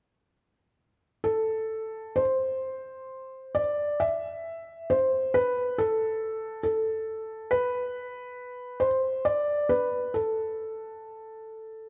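Haunting and full of longing, this fragment of a slow Celtic folk piece in A minor drifts at 68 BPM in 3/4, its beats uneven and rubato. A lone felt-muted upright piano enters at 1.2 seconds and plays on until 11.9 seconds, its soft, mellow, intimate tone sitting up front within a narrow span from A4 to E5. A moderate scoring-stage reverb and a dark production give the sound a hushed, shadowed air, with the tuning set slightly sharp at A4 = 441 Hz.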